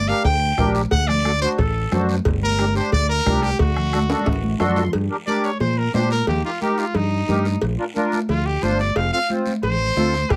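Closely miked with light reverb, this fiery, danceable cumbia excerpt moves at 179 BPM in straight 4/4, settling into G minor at 4.9 s. A brilliant, forceful trumpet with light vibrato sits up front over a warm, direct fingered electric bass and a reedy, sweet accordion with light tremolo tuning, while ringing cowbell and timbales, bright, hard-hand congas and a raspy guiro fill the percussion. A soft-beater bombo drops out at 4.8 s, and after a drum fill and an accordion flourish the trumpet takes a punchy solo from 4.9 s.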